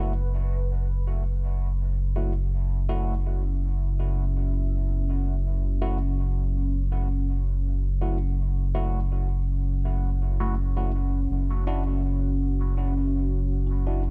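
Meditative and hazy, this ambient excerpt rests on a deep, round analog bass held up front while a moody, detuned pad carries sustained chords through chorus, built-in reverb and a filter sweep. An overdriven tine electric piano adds gritty, barky stabs colored by phaser and dub echo, and a soft, pure FM synth bell enters at 13.7 seconds with a brief arpeggio in the background. The production is dark, with little reverb around the parts.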